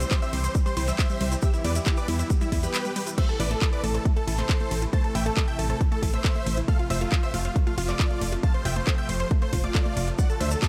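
This uplifting trance drop in A minor, cut from a longer piece, opens at full force with a huge, euphoric supersaw lead carrying the melody over a thick unison pad, two unison plucks and a round FM bass, all pumping against the sidechain at 137 BPM in a straight 4/4. A house kit with metallic hats, handclaps, crash and ride plays from the start, an up-front, punchy electronic kick lands at 0.1 s, and a grainy, mellow tube shaker sits in the background until 3.2 s and returns at 10.2 s. The bright, airy lead is detuned and compressed, with a digital delay trailing its line from E4 to A5. Above it, a lush pluck traces a second line through a delay, and a lower pluck with a filter sweep spins delayed arpeggios. The slow-attack pad, treated with chorus and phaser, holds sustained chords that move from C to Em and on to Am and F, while the dark, fast-attack bass anchors the low end. The mix is dry, loud and soaring, with an emotional lift throughout.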